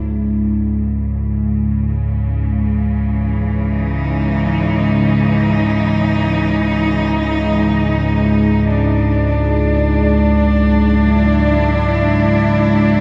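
Desolate and cavernous, this dark ambient drone fragment pairs a mellow, evolving analog drone of chorused sawtooth and pulse-wave tones, sitting low and up front, with a rich chamber cello section bowing smooth, vibrato-laden chords from C#madd9 to Dadd9 at 8.7 seconds, all bathed in the long, vast reverb of an echoing space.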